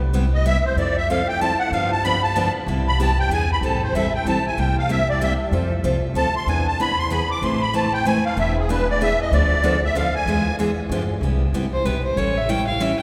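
Playful and charming, this excerpt of acoustic jazz manouche swings along at 189 BPM in 3/4, opening in C major before turning to A harmonic minor at 3.6 s. A reedy, shimmering musette accordion carries the melody up front from 0.3 s, over a woody, thumpy pizzicato upright bass on gut strings and a bright picked steel-string acoustic guitar with audible finger squeak. A bowed solo violin, biting yet earthy with light vibrato, takes over the line at 11.7 s, all set in the long, wet reverb of a church or concert hall.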